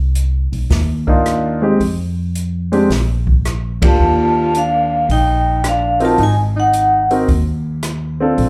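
Small-group swing and bop jazz at 110 BPM with a playful, relaxed mood, cut from a longer piece and heard as a live club gig through the venue's PA with light reverb. A woody, thumpy upright bass opens the passage, joined at 0.2 seconds by an airy kit with dark cymbals and a boomy kick, then by an up-front grand piano with long sustain and slapback echo, moving through Cm11, Fm, Bb6, Ebmaj9 and Ab7. After a band accent at 3.7 seconds, a ringing vibraphone with medium motor vibrato carries the melody while a subtoned alto saxophone adds a smooth second line, both with slapback echo, until 7.1 seconds.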